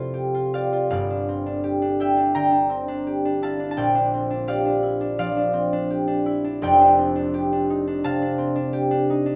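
A rubato flow in 4/4 carries this graceful, peaceful classical excerpt for solo concert harp, cut from a longer piece and running about 9.4 seconds. The fingerpicked harp sits up front with a warm, ringing, acoustic tone, spanning F1 to Bb5 as lush extended chords pass from Fadd9 through Gm9 and Bb69 before settling on F69 at 6.6 seconds. Light reverb surrounds the sound.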